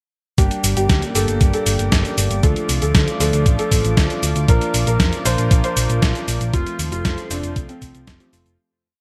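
A danceable, melodramatic italo disco piece opens at 0.4 s with a thumpy four-on-the-floor kick, a disco machine beat of cabasa, hats and a gated-reverb snare, and a round, punchy sequenced sixteenth-note bass. A dark concert grand piano repeats a mellow riff melody over low-pass filtered electric grand piano chords with syncopated pushes, and a detuned, chorused analog pad with a slow attack comes in at 0.6 s. The progression cycles Gm, Dm, Bb and F before a fade-out begins at 5.9 s.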